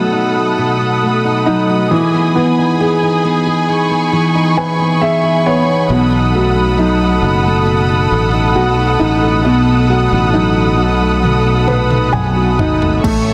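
A tender, hopeful pop ballad fragment opens with a woody, vintage upright piano, an up-front bowed string section with rich vibrato, and a full-bodied fingerpicked steel-string acoustic guitar playing arpeggios through tape echo, moving from B7 to Emaj7 in a wet concert hall reverb. A bright, growly fretless electric bass enters at 5.9 seconds, and a layered electronic house drum kit with a deep kick joins in the background at 11.2 seconds, its fill arriving alongside a piano fill. The mix is dense and heavily limited in a modern style.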